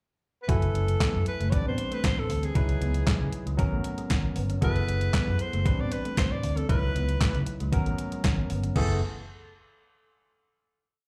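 A breathy, whispered alto saxophone with light vibrato and a soft subtone attack opens at 0.4 s, playing intimate jazz-style call phrases in this late-night, funky early-eighties boogie funk piece at 116 BPM in 4/4, with plate reverb and echo. From 0.5 s, a detuned, overdriven 8-bit drum machine thumps out an up-front four-on-the-floor beat with handclaps layered on the snare, while a dark, foam-muted fingered bass drives a fat syncopated line full of ghost notes and chromatic approaches. A barky tine electric piano holds lightly overdriven chords through a combo amp, and a mellow, clean guitar plays a muted single-note riff in the background over F#m11, Am11, C#m11 and G#m11, all heard through a club PA before a final F#m11 chord at 8.8 s.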